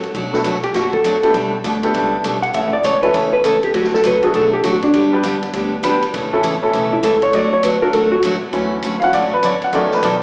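A brisk swung 4/4 at 200 BPM drives this playful, cheerful western swing excerpt in D major, cut from a longer piece and heard as a live club gig through a small-sounding PA with lush hall reverb. A vintage drum kit with punchy kick, medium-tuned snare, hi-hat and ride sits in the background alongside a woody, thumpy pizzicato upright bass. Up front, a dark, clean hollow-body jazz guitar takes the melodic solo from the start, fingered between D4 and F#5 with slapback echo, until it stops at 8.2 seconds. A bright, full-bodied dreadnought acoustic guitar picks the accompaniment, and a brilliant upright piano with short sustain joins it before taking over the solo at 8.5 seconds, both carrying slapback echo. The chords move from Bm7 through G, A and D before settling on Dmaj7.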